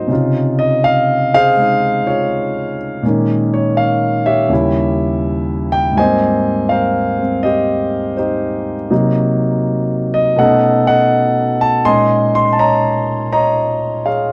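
A relaxed swing at 82 BPM in 4/4 gives this solo jazz piece its moody, late-night lilt, with the eighth notes pushed into a gentle 67% swing. A concert grand piano carries everything alone in Bb minor, ranging from Eb2 up to C6, and sits up front with an intimate, vintage character. Its deep bass and long sustain stand out, and the audible action noise of the instrument adds a close, human presence. The harmony moves through rich extended chords, opening on Dbmaj9 and passing through Bbm7, Eb7b9, Abmaj9, Cm7b5 and B9 before settling back on Bbm7 around 11.9 seconds. A light reverb and a dark, warm production wrap the smooth tone, and the 14.3-second passage is cut from a longer piece.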